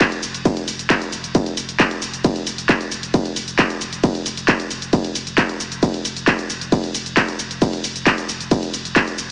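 Through a light reverb and a small-speaker sound, this short cut from a longer driving peak-time techno track sets a dark, hypnotic mood in a straight 4/4. Up front, a layered, distorted electronic kick pounds alongside a produced techno kit of handclaps, warm hats, ride cymbal and shaker, both re-recorded in a large room, with the hats, cymbals and percussion pumping against the sidechain. From 0.2 seconds a deep, thick sub bass with a triangle tone, fast attack and long sustain sits in the background, overdriven, low-pass filtered and pumping as well.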